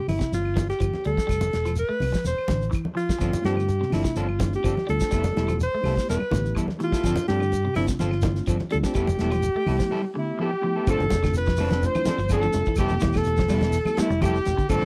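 A breathy alto saxophone with vibrato leads up front over a twangy, phased guitar arpeggio, damped dry drums, a punchy fingered bass, grainy shekere, soft-handed congas and faint woody claves in this joyful, driving 125 BPM afrobeat groove in G mixolydian, with slightly broken-up guitar stabs and a mellow tine electric piano joining near 3.2 seconds, a break at 9.9 seconds, and a brilliant trumpet adding a second line from 10.2 seconds, all captured in a close, small-room 1970s-style sound.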